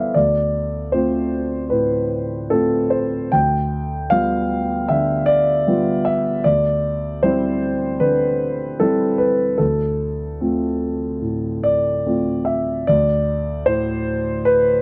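A solo concert grand piano, up front with deep bass and a warm tone, carries this intimate, reflective neoclassical minimalist piece in D dorian at 76 BPM in a rubato 4/4, moving through Dm7, G7/D and Cadd9/D across a range from D2 to G5, with light reverb and a dark production, before arriving on a bare D5 chord at 12.9 seconds in this short cut from a longer work.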